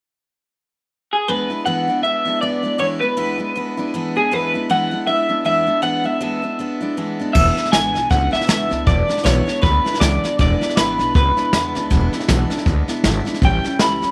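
Rockabilly with an upbeat, rowdy energy, this piece is cut from a longer track and moves at 158 BPM in 4/4 with a swung eighth-note feel in E mixolydian. An electric guitar played through a small old amp carries the melody from 1.1 seconds, its picked tone twangy, slightly broken-up and lo-fi, colored by analog chorus and tape echo. A picked steel-string acoustic guitar joins at 1.3 seconds as accompaniment, sounding full-bodied with fresh strings, and both guitars sit up front. At 7.3 seconds an upright bass enters with a woody, thumpy pizzicato on gut strings, together with a jazz kit played with brushes, featuring a punchy kick, a medium-tuned snare, hi-hat and crash cymbal. The harmony rests on E7 for most of the piece before shifting to A7 near the end at 13.4 seconds. Light reverb and a small room ambience give the performance an intimate, lively setting.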